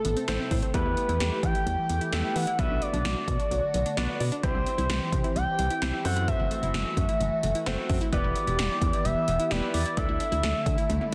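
Heavily limited and dense, with light reverb, this nostalgic, upbeat synth-pop excerpt runs at 130 BPM in straight 4/4 through chords from Amadd9 and Em to F#m7b5 and a closing Dsus2. A smooth, sawtooth portamento lead with vibrato carries the melody over a swirling phased analog pad, a punchy, round FM bass, and up-front 80s electronic drums with a gated snare, gated toms and metallic hats, capped by a drum fill at 10.9 seconds. In the background, a nasal, detuned analog pluck plays arpeggios, while a clear, polished concert grand piano adds accompaniment from 0.3 seconds.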